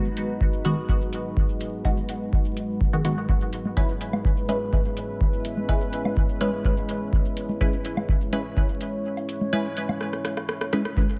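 Deep and nocturnal, this dub techno excerpt sets a dark, moody pad with detuned unison saws and 12-bit sampler grit against muted, filter-plucked chord stabs smeared by phaser, cassette tape and dub echo. An up-front analog kick drops out at 9.0 seconds, metallic hats and rim clicks trail dub echo, tape-warm congas and woodblock enter at 3.7 seconds to pump and echo, and a drum fill arrives at 10.0 seconds, all within a crackling vinyl haze over G#m7 and C#m7.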